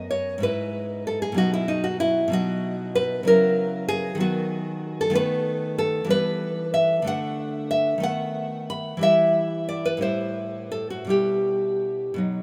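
In a rubato 6/8 lilt of roughly 54-65 BPM in dotted quarters, this wistful, intimate fragment of a romantic classical guitar piece features a solo nylon-string guitar, bright, fingerpicked and up front, drifting through shifting harmonies before settling into E minor at 5.2 s, all bathed in a huge ambient reverb that lets each note linger.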